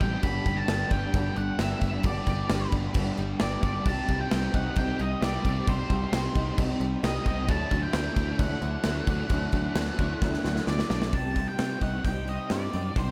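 Dreamy and wistful, this 132 BPM shoegaze and dream pop rock excerpt layers a distorted octave-fuzz lead guitar with tape echo over a very quiet, shimmering twelve-string acoustic, a lo-fi electric guitar through a small old amp with reverse reverb, a background fuzz guitar thickened by ensemble chorus, a round picked electric bass and an up-front gated 80s drum kit with bright cymbals and a punchy kick, moving through G, Cm and Dadd9 before a drum fill at 10.2 seconds leads into a new section at 11.1 seconds.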